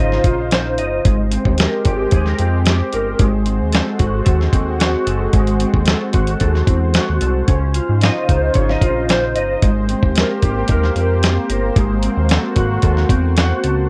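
Hazy and dreamy, this indie and bedroom pop piece cut from a longer track pairs a mellow, clean electric guitar warbling through ensemble chorus with a lush, thick unison pad of detuned sawtooth chords, while a glossy, retro chorused synth bass and a gritty, sampler-style soul drum kit with a thumpy kick and fat snare sit up front, the mix wrapped in light reverb and worn cassette-tape warble as Dbmaj9, Abmaj9 and Ab7b9 chords cycle.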